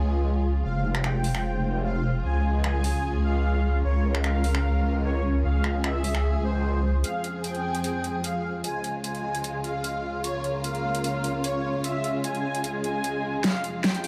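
Lush bowed strings, a blurred granular pad and an up-front, saturated wobble bass with chorus and overdrive open this menacing half-time dubstep excerpt, joined almost at once by an airy supersaw melody with 12-bit sampler grit and dub echo, then by a big-room electronic drum kit of finger snaps, metallic hats and a huge snare. The wobble bass drops out at 7.0 seconds as a build-up begins over a recurring cycle of minor and major chords. From 13.4 seconds, a drum fill and a barely audible riser close the passage.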